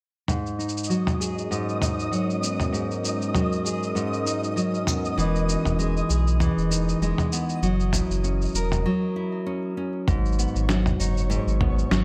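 Folktronica with a wistful, autumnal mood, this excerpt pairs up-front fingerpicked nylon-string guitar arpeggios under a low-pass filter with a muffled, overdriven lo-fi sampler-style kit of shaker, snare and toms, a warbling tape-like pad of dark sustained chords drifting in the background, a bright flickering granular texture, and a deep, round sub bass that enters at 5.2 seconds, before a break at 8.9 seconds gives way to a thumpy, pitched-down electronic kick at 10.1 seconds.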